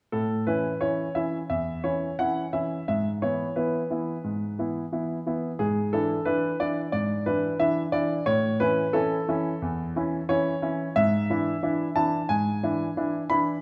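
A clear, smooth grand piano plays alone and up front, carrying a graceful classical-period sonatina in A major from 0.1 to 13.6 seconds. The tone has a vintage polish, and the playing moves at 89 BPM in 4/4 with an elegant rubato feel, ranging from E2 up to B5. The harmony settles on A, moves through E over G sharp and E7 over G sharp, returns to A at 8.3 seconds, and reaches E7 over G sharp again. A wet recital hall reverb surrounds the instrument with a resonant, airy space. This short passage, cut from a longer piece, holds a poised and courtly mood throughout.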